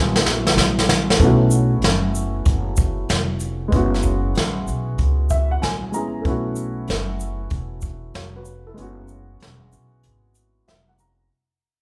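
This mellow, nocturnal jazz-hop excerpt moves at 95 BPM in 4/4, with a swung sixteenth-note feel. It opens on a brushed drum fill, then fades out over the rest of its length as the harmony alternates between F#9sus4 and B9sus4. A dark, worn upright piano sits up front in an accompanying role, its slightly detuned, intimate tone carrying long sustain and audible action noise, and it adds fills at 5.0 seconds and again near the close. Underneath, a pizzicato upright bass with steel strings gives a thumpy, woody low end. The brush kit of hi-hat, shaker, medium-tuned snare and boomy kick sounds airy and polished, and a break arrives at 8.8 seconds. The band plays live together in one room with light reverb.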